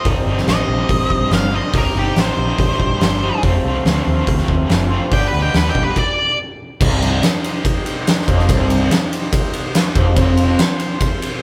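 A straight 4/4 pulse at 142 BPM drives this heavy, gritty blues rock and southern rock power-trio excerpt, led by an oversized, low-tuned drum kit up front with fat snare, boomy kick, crash, ride and hi-hat in a pumping stone room. Beneath it sit a round, foam-muted vintage bass and a bright, double-tracked overdriven guitar riff treated with harmonic tremolo. A dark octave-fuzz lead carries the melody over a very quiet, biting second lead guitar, while a thick overdriven tonewheel organ holds sustained chords in the background through a slow rotary speaker; moving from C dorian into C minor, the band hits a stop at 6.0 s before the second section begins at 6.8 s, and the organ lasts until 11.4 s.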